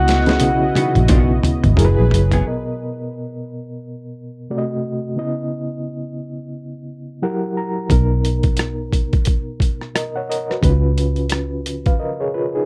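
A fat, detuned analog lead sings a brief melody over a drum fill, an overdriven reed electric piano with fast tremolo, a smooth chorused pad in the background, and a round, foam-muted electric bass, while a clean hollow-body jazz guitar adds a second line from 0.8 seconds. At 2.5 seconds this relaxed, soulful neo-soul R&B passage thins to the reedy electric piano alone, playing through a combo amp and adding a fill of its own. At 7.9 seconds the dark bass and a compressed, gritty boom bap sampler-style kit, with a thumpy kick and high-tuned snare, return up front in a dry, close 1970s-style studio sound.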